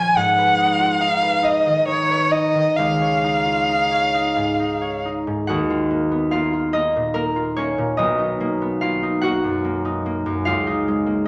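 A rich, expressive violin and a bright, ringing concert harp open together in this wistful, mysterious impressionist duo, a classical piece in Eb minor and 6/8 that moves with rubato at roughly 44-50 BPM in dotted quarters. The solo bowed violin sings an up-front melody between Db5 and Ab5 with vibrato and portamento until 5.0 s, while the fingerpicked harp accompanies across a span from B1 to Gb5 over chords such as Abm7, Dbadd9 and Bmaj7, carrying on alone until 11.3 s. A recital hall reverb surrounds the pair, and the passage is cut from a longer piece.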